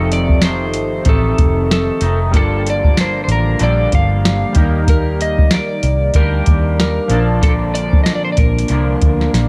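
Indie bedroom pop with a laid-back, dreamy swing, this short clip cut from a longer piece sets a slide guitar melody, slightly broken-up and played with fingerpicks under a plate reverb, over a twangy, compressed guitar with a vibrato effect and airy, warbling analog keys softened by cassette tape. A dark, foam-muted fingered bass sits round and low, while an overdriven rhythm box with a deep kick, crisp snare and metallic hats sits up front, entering at 0.1 seconds. The chords move through F7, Gm9, Ebmaj7 and Bbmaj7 within a light reverb and a cassette-tape haze.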